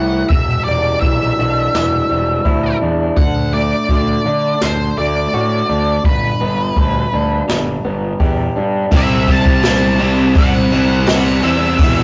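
Quiet-loud alternative rock with a brooding, angsty mood opens in half time, a dark octave-fuzz lead guitar singing over lo-fi arpeggios from an electric guitar through a small old amp, a growly, up-front fuzz picked bass and a jazz brush drum kit with dark cymbals and a boomy kick, until at 8.9 s the arpeggios stop and a scooped, bright distorted electric guitar, a very quiet double-tracked fuzz guitar and a hollow-bodied overdriven semi-hollow guitar crash in with a heavy riff, all captured in a rough, saturated rehearsal-room sound.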